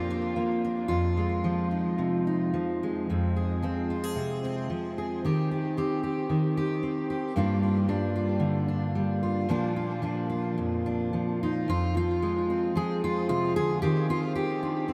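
The rhythm is rubato, loosely pulsing around 112 BPM in 4/4, giving this short folk passage, cut from a longer piece, a drifting, unhurried feel. A lone fingerpicked steel-string acoustic guitar carries everything, set up front with the bright sparkle of fresh strings and the full body of a jumbo, with audible finger squeaks. Its range runs from F2 up to Ab4 in F dorian, moving through Bb, Fm7, Fm, Cm/Eb, Gm7 and Bb, then back to Fm before settling on Cmadd9/Eb near 13.8 seconds. A subtle chorus and delay shimmer on the guitar, and a huge ambient reverb with a long 8.7-second tail soaks the mix in a dreamy haze. The mood is melancholic and reflective, like a quiet moment of remembering.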